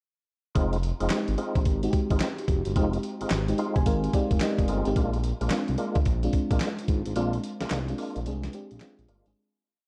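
A lightly overdriven tonewheel organ opens this bouncy, slick new jack swing piece at 109 BPM in F dorian with short syncopated stabs, its fast rotary speaker and chorus vibrato adding shimmer, before a gritty, compressed sampler-style drum kit with a thumpy kick and fat, clap-layered snare joins a smooth, detuned synth bass playing a swung line with muted ghost notes and slides. From 1.1 s a lush, dreamy FM electric piano with a soft pad layer adds rootless, syncopated chord stabs and grace notes, stepping forward with a fill from 3.3 s as the harmony moves from Fm7 to Bb7. The hard-swung verse ends in a break that fades out from 7.2 s, with drums and bass up front in a dry, close-sounding mix.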